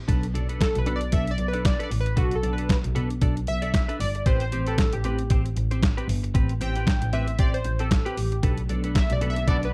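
A thumpy, detuned 8-bit drum machine sits up front in this danceable, late-night slice of early-eighties boogie funk at 115 BPM, its sampler-style kick, snare and hi-hat carrying a 16th-note swing and a tape-warm, small-room character. A rich bowed double bass glides with portamento and vibrato beneath a bright, twangy clean electric guitar riff treated with analog chorus, while a funky polysynth comp of detuned sawtooth and square waves with filter sweeps joins at 0.6 s and an analog polysynth solo runs throughout over Bm7 and Am9 chords. A clear, vintage horn section in octaves surfaces briefly in the background with slapback echo at 9.5 s, all within a dark digital ambience.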